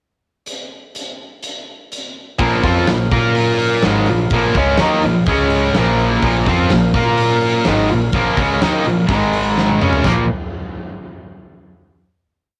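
A straight 4/4 hard rock beat at 125 BPM opens with a big, punchy acoustic drum kit alone for a pickup bar from 0.5 seconds, its fat snare, splash cymbal and toms pumping in a large room with a cassette-tape grit. At 2.4 seconds the menacing Bb minor power-chord riff crashes in, led by an up-front, bright high-gain distorted guitar with a picked overdriven electric guitar behind it, while a woody, growly pizzicato upright bass on steel strings drives eighth notes that double the riff. A very quiet, round, dark tonewheel organ holds a clean sustained pad through a slow rotary speaker, and after a drum fill the aggressive piece lands on a final Bb chord at 10.0 seconds, all captured as a home cassette recording with light reverb.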